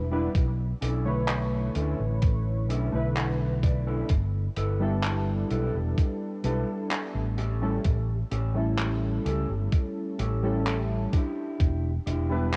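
Warbly, detuned lo-fi synth keys sit up front in this nostalgic, melancholic vaporwave fragment, their chorused, tape-echoed chords blending pulse, sawtooth and sine tones with a fast attack that then decays. Beneath them a round, amped fretless electric bass holds the low end, while a dark, fingered electric guitar plays a riff filtered down and roughened by 12-bit sampler grit and lush chorus. A clean guitar fill surfaces between 2.7 and 4.1 seconds. A thumpy, sampler-style electronic kick drives the unhurried, straight beat, joined by a smooth, rolled-off jazz kit with handclaps and hi-hat that carries the same vintage grit. The harmony drifts from Bm11 through G69 and A7 to Em7, all heard through a small room and a worn cassette whose pitch wavers and whose top end stops at 10.6 kHz.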